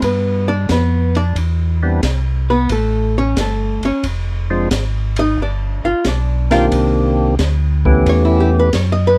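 A swung 4/4 groove from an acoustic kit with dark cymbals, a high-tuned snare and a boomy kick drives this bluesy, soulful soul jazz organ trio fragment, where a round, clean tonewheel organ bass with key click and slow rotary speaker sits up front beneath a compressed, picked hollow-body archtop guitar soloing throughout, while from 1.8 seconds a fat, lightly overdriven percussive organ with third harmonic percussion and vibrato carries the melody, captured in a dry, close 1970s-style studio sound with light reverb.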